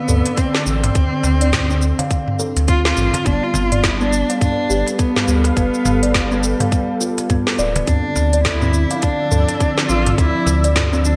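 A swung 16th-note groove at 104 BPM in 4/4 drives this earthy, organic downtempo excerpt in D dorian. It is built on a tight electronic kick, an afro-pop kit with a woody snare and crisp hats up front, a faint cajon in the background, and a round sine sub bass that pumps with the sidechain. A dark, bowed cello carries the melody with vibrato and portamento through digital delay, while a ringing kalimba plays arpeggios under a filter sweep. A detuned sawtooth pad with chorus sustains chords moving from D7(no3) to G7 at 3.3 s and Dm7 at 7.9 s, all within a bright 1980s-style digital production, a moderate plate reverb, and gated reverb on the kit.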